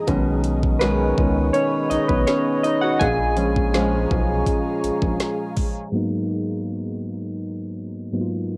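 Soft, round electric-piano-like synth keys open this short contemporary R&B fragment, chorused and sitting up front as the lead voice, joined from the start by an ethereal, detuned pad with a slow attack and its own reverb that breathes with sidechain pumping, and a dark, picked steel-string acoustic guitar spinning arpeggios. Within moments a trap kit arrives with a knocking kick, woody snare and metallic hats placed close, alongside a rubbery, nasal square bass with a bouncy filter pluck. At 82 BPM in a straight 4/4 and in G# dorian, the mood is longing and sensual, the harmony drifting from B69 to A#m7. At 5.9 seconds the pad drops away and a filter sweep carries the music into a closing passage on G#m9, with the guitar lingering briefly before the keys finish alone. The dry, intimate sound has a home-cassette softness, its tape haze coloring the keys, pad, guitar and drums.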